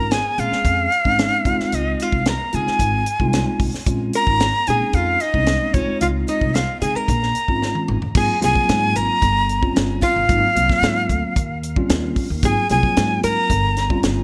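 Bright 1980s-style digital production with light small-room reverb frames this slick, funky jazz fusion excerpt, where an airy, crisp-attacked metal flute with vibrato and delay carries the melody up front over a dark, clean hollow-body archtop guitar second line, mellow tine electric piano chords, woody pizzicato upright bass and a funk drum kit with a high-tuned snare and tight kick, whose fill at 7.6 seconds leads into a new section at 8.2 seconds.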